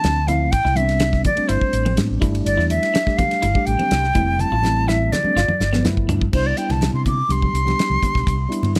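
A pure, vibrato-rich concert flute leads this funky, soaring electric jazz fusion piece in C major at 124 BPM in straight 4/4. It sits up front over a mellow tine electric piano, a round, dark fretless electric bass and a dry, damped 70s drum kit with a fat snare and tight kick. Congas with a thick, soft-handed skin join from the background at 0.3 seconds, while a clean, picked electric guitar adds compressed stabs touched by subtle chorus. The harmony moves through extended chords such as Dm9, Am11 and G13, and the drums play a fill that carries into a new section. At 6.3 seconds, once the guitar has stopped, the flute takes an expressive, soft-attack solo over Cmaj9, all within a small room ambience in a passage cut from a longer piece.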